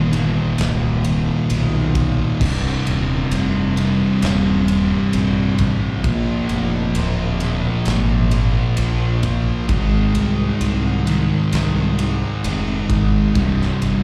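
A live club sound fills this fourteen-second cut from a longer stoner and doom metal piece, heard through the venue's PA with a light reverb hanging over the band. At a slow 66 BPM in C minor, the mood is brooding and heavy, with the harmony moving from Eb to Cm, then Bb and Ab before landing on a C power chord at 13.4 seconds. Up front, a growly, punchy fingered electric bass with fuzz and overdrive carries a bright, direct-amped tone. Behind it, two thick fuzz guitars play the riff, one dark and the other warm, joined by a double-tracked crunchy overdriven guitar with a slapback echo, all three picked and sitting in the background. A big acoustic rock kit enters at 0.1 seconds, its fat snare and tight kick mid-forward in a roomy space, alongside crash and ride cymbals.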